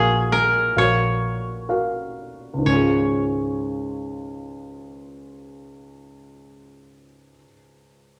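In a straight 4/4 at 63 BPM, this hopeful, heartfelt pop fragment from a longer piece opens by slowing down over its first 2.7 seconds. A koto carries the melody in Db major, plucked with fingerpicks and sitting up front with a dry, woody, acoustic tone between Eb4 and Db5. Beneath it, a warm concert grand piano supplies the accompaniment across a broad span from Db2 to F5, with deep bass and short sustain that keep its chords close and present. A vintage muted fingered electric bass anchors the low end between Bb1 and Db2, its foam-muted, amped sound dark, round and punchy. The harmony moves from Gbmaj7/Bb to Dbadd9 at 2.7 seconds, all set in a large studio reverb with a 0.9-second decay. The koto and bass stop at 7.4 seconds, while the piano continues until 8.2 seconds.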